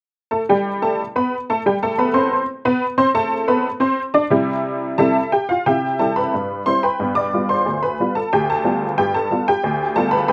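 A straight 2/4 pulse at 90 BPM drives this cheerful, playful ragtime fragment in C major, cut from a longer piece. A lone honky-tonk upright piano carries everything from 0.3 to 10.3 seconds, ranging from D2 up to D6. Its detuned, jangly tone gives a vintage flavour, and the tuning sits at A4 = 445 Hz. The harmony opens on C, then moves to G7 around 7.0 seconds before settling on G7 over D. The phrase splits into an opening passage and a contrasting second one beginning near 5.7 seconds. The sound is dry and open-air, with the bright piano placed present and up front.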